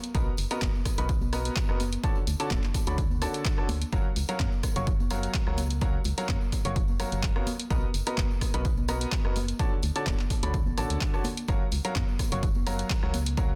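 A punchy analog drum machine opens this uplifting, euphoric piano house cut at 0.0 s, its handclaps, hi-hat and rim click sounding re-recorded in a large room, alongside ringing acoustic tambourine and congas set close yet in the background. Almost at once the up-front electronic kick arrives with a punchy analog thump, joined by a hollow, dark, organ-like FM bass with a fast attack and decaying notes, pumping from sidechain compression. Over this, a bright upright piano plays the riff with a brilliant, woody tone and long sustain, roughened by vintage 12-bit sampler grit, colored by digital delay and pumping from the same sidechain effect. At 127 BPM in 4/4 with a light 16th-note swing, the music sits in F# major and cycles through Bmaj7, Dmaj7 and F#maj7 twice. A digital ambience surrounds the mix, and the dense, heavily limited modern master keeps this cut from a longer piece loud and tightly packed.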